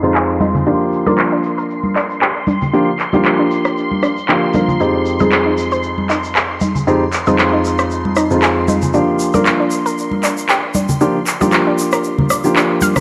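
A vinyl-crackled, low-passed haze and a moderate echo-chamber reverb frame this smooth, moody deep house excerpt, swung lightly in 4/4 and moving between Fm7 and Gm7/F under a filter sweep that runs throughout. A soft, felt-muted upright piano plays stabs up front with dub echo, joined at 0.1 seconds by layered electronic handclaps and rim click, while a round, nasal analog pluck spins arpeggios through tape-worn chorus in the background. Bright, close congas arrive at 0.4 seconds beside a grainy, saturated tube shaker, and a silky analog string pad with ensemble chorus and vibrato sustains high behind them.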